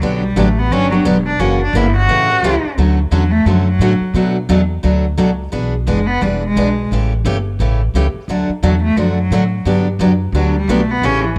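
Heard as a home cassette recording in a small room with moderate spring reverb, this playful, charming snippet of acoustic string swing in D major at 174 BPM features a bowed cello with a reedy, gut-string period tone soloing up front across the whole passage, over bright, freshly strung picked steel-string guitar chords with audible finger squeak, both parts carrying a cassette-tape colour, while a woody, thumpy pizzicato upright bass anchors the low end through changes that move from Gmaj7 to Dmaj7 and back.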